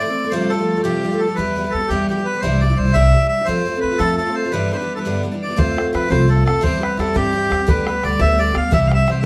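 Celtic folk in the form of a cheerful, rollicking jig in a straight 6/8, cut from a longer piece. A reedy, hollow accordion carries the melody up front, close-miked and dry, over a picked twelve-string acoustic guitar whose shimmering, octave-doubled dreadnought tone sits equally forward, with an audible finger squeak. A woody, dark upright bass with gut strings enters at 1.4 seconds, its thumpy pizzicato anchoring the low end. After a brief break at 4.5 seconds, the tune moves into a new section at 5.6 seconds, where a damped, tight bodhran joins. The harmony moves through chords such as Fadd9, Em, Cadd9, G6, C/E and G/D before settling on C, and the whole band sounds as if playing live together in one room, set in a studio reverb.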